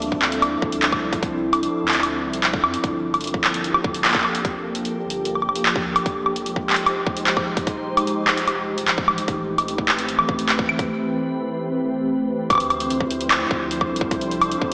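A booming analog drum machine with dry, metallic hats, handclaps, woodblock and slapback echo drives this cerebral, glitchy IDM excerpt at 149 BPM in D minor, joined from 0.1 seconds by a tight, overdriven electronic kick. Up front, a glassy, ethereal FM pad with ensemble chorus sustains mellow ninth chords moving from Dm9 through Gm9, Fm9 and Am9, while a round sine sub bass sits deep in the background. After a break at 10.9 seconds, a bright, bubbling sawtooth texture with resonant random filter steps enters at 12.7 seconds, all inside a big, reverberant arena-like space.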